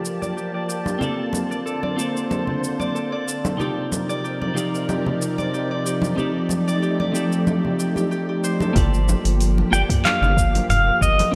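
A twangy, delayed clean electric guitar, a silky, chorused string machine and a bright Celtic harp's filtered arpeggios open this sunny, smooth sunset chillout excerpt, joined by a smooth R&B kit of metallic hats, handclaps, shaker and toms, and ringing congas over a lightly swung groove, before a round, deep analog bass arrives up front alongside a soft electronic kick at 8.8 seconds and a fingerpicked pedal steel guitar takes a slide melody with volume swells at 9.7 seconds, all bathed in a dark, wet stage reverb.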